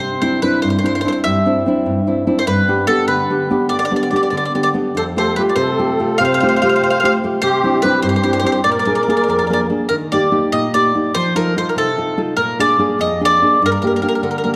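Italian folk serenade in a straight 6/8 at 97 BPM, wistful and passionate, with a woody, double-strung picked mandolin carrying the melody up front over a fingerpicked classical nylon-string guitar with audible finger squeak, while a reedy, shimmering musette accordion adds a vintage, band-limited second line from 5.0 to 9.7 seconds, and the key moves from C major to Eb major at 9.9 seconds, all within a dark, warm production and a wet concert hall reverb.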